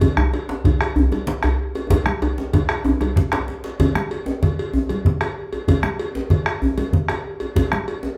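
Driving and earthy, this short cut from a longer West African drum ensemble piece moves at 127 BPM in a straight 12/8. A round, up-front bombo anchors the group as the loudest part, while a metallic, distant cowbell rings out from the back of a large room. Two djembes share the texture: one is deep with metal rattles and struck with hard hands, sitting far off, and the other is medium-tuned and played with soft hands close up, heard only from 0.2 to 3.5 seconds. Bright, thin-skinned congas, damped and dry, sit quietly near the listener and are played with soft hands. A drum fill runs from 1.9 to 3.8 seconds, closing the opening passage before the second section takes over. The players perform together in one room, with a moderate studio reverb giving the ensemble a live, spacious feel.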